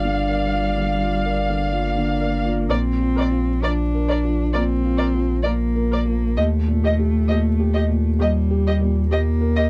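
A muted chamber violin section sings a veiled melody with vibrato, up front from the very start of this dry, close 1970s-style neoclassical piano-and-strings excerpt in free rubato, over a dark con sordino cello second line with portamento, a felt-muted upright piano whose intimate action noise can be heard, a lone viola in the background, and a deep, round sub bass, as the harmony moves from Gm7 to Bbadd9 at 2.7 s and to Eb at 6.4 s in a longing, fragile mood.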